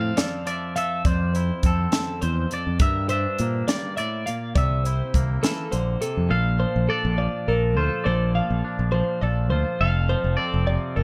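An overdriven, fingered electric bass growls up front with a bright, amped bite, anchoring this intricate, bright stretch of math rock and Midwest emo in a straight 6/8 feel. Above it, a clean, compressed twangy electric guitar picks the melody in the upper register, touched with slapback echo, while a second twangy guitar, fingered with a scooped tone, supplies accompaniment across a broader span. A picked twelve-string electric guitar adds warm arpeggios in the same high range as the melody. A crisp, polished fusion kit with a high-tuned snare, tight kick and hi-hat plays from 0.2 s until 6.2 s, sitting airy and present in a studio room, after which the guitars and bass carry the second section on their own. The harmony moves through Fmaj7, Gm7 and C7 before opening onto Bbmaj9 at 6.3 s and settling on F, all framed by a dark production with light reverb in this fragment of a longer piece.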